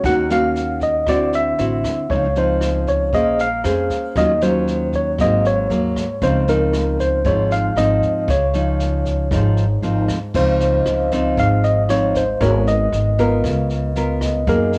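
A slightly out-of-tune, worn tine electric piano carries the melody up front, while a fingerpicked, full-bodied nylon-string guitar and a growly, woody upright bass played pizzicato sound alongside it from the opening of this sophisticated, romantic bossa nova at 116 BPM in Db major. A jazz kit played with brushes sits distant and roomy behind them, its dark cymbals, rim click, medium-tuned snare and boomy kick sounding as if in a small room. At 10.6 seconds, just after a new section begins, a mellow vibraphone with soft mallets and the motor off rings in the background. The harmony moves through lush seventh, ninth and thirteenth chords, settling on Dbmaj9 before closing on Abm9 and Db13. Cassette tape colours the keys, guitar and drums, with plate reverb on the piano, guitar and vibraphone and tube saturation on the bass, giving the piece the intimate feel of a home recording cut from a longer piece.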